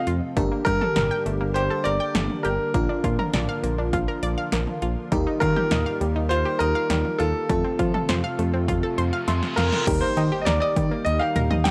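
A punchy, overdriven analog drum machine sets a straight 4/4 pulse at 101 BPM in this wistful, bright synth-pop fragment, where a clear concert grand piano carries the melody up front over a smooth, dark synth bass, a dreamy FM electric piano with chorus and tremolo, a warbling vintage pad, and a round analog pluck playing chorused arpeggios through analog delay, moving through Gmadd9, Bb, Ebadd9 and F before a reverse cymbal at 9.0 s and a drum fill lead into an electronic impact at 9.9 s on Eb, captured as a dry, gritty hardware recording with light reverb.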